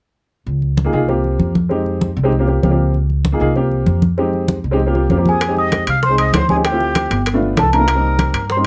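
Upright bass and congas open this fiery, sultry Afro-Cuban jazz passage at 0.5 seconds. The pizzicato bass is woody and up front, and the thick-skinned congas are struck with hard hands in a close, dry sound. An upright piano joins almost at once, its slightly detuned tone and short sustain coloring a chord cycle in F minor at a brisk 194 BPM in straight 4/4. At 5.3 seconds a bell-like celesta takes the melody, sweet and delicate under a plate reverb, while a breathy, bright jazz flute with crisp chiff and vibrato carries a lower second line. The harmony shifts at 5.4 seconds, as tight, high-tuned bongos settle into the background and ringing metal-shell timbales enter, all under a light room reverb in this excerpt cut from a longer piece.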